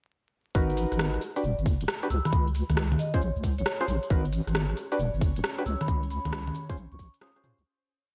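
A bed of vinyl crackle sits over this late-night, skippy two-step UK garage piece at 135 BPM, with a tight, up-front kick and crisp, tape-warm swung hats, rims, cabasa and congas from a garage kit re-recorded in a large room. A deep, wobbling bass riff pumps from the sidechain under hollow, organ-like chord stabs soaked in lush chorus and delay, moving through G#m9, Em9 and A#m9, while a metallic vibraphone rings out short phrases from 1.4 s. An ethereal, airy pad holds a high note in the background from 4.8 s as the piece fades out from 5.3 s.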